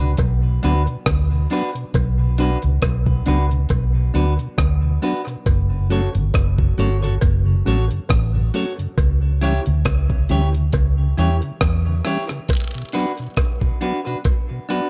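Dub reggae in B minor at 68 BPM, this hypnotic, meditative excerpt moves in 4/4 with a gentle swing on the sixteenths. A compressed, gritty breakbeat-style drum kit sits up front with a thumpy kick, hi-hat and rim click, joined by a round, punchy muted bass that stays low and dark until it drops out at 12.0 seconds. A bright, twangy clean electric guitar picks its accompaniment through a dub echo, while a soft, flute-like tonewheel organ adds vibrato through a slow rotary speaker. Cowbell and a jawbone-type rattle, sounding close and dry, sit quietly in the background, also fed into dub echo. The harmony moves from Bm to F#m and C#dim before returning to Bm for a break at 12.5 seconds, all framed in a dark, warm digital ambience.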